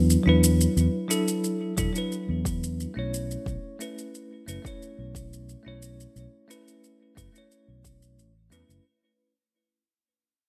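This sunset chillout fragment, cut from a longer piece, moves at an unhurried 89 BPM in a straight 4/4 and carries a smooth, wistful mood, tuned slightly sharp to A4 = 441 Hz. A bell-like tine electric piano sits up front with a clean, bright tone that seems to come through its own built-in speakers, its chords trailed by a digital delay as the harmony shifts from E9sus4 to B9sus4 at 3.1 seconds. Underneath, a fingered electric bass growls with an amped, warm presence near the front of the mix, shaped by a filter sweep across the whole passage. A layered electronic shaker with a gritty overdriven edge enters at 0.1 seconds, and a deep, overdriven electronic kick drum joins at 1.8 seconds before dropping out at 8.0 seconds. The bright 1980s-style digital production adds a light reverb, and the whole fragment fades out over its full length.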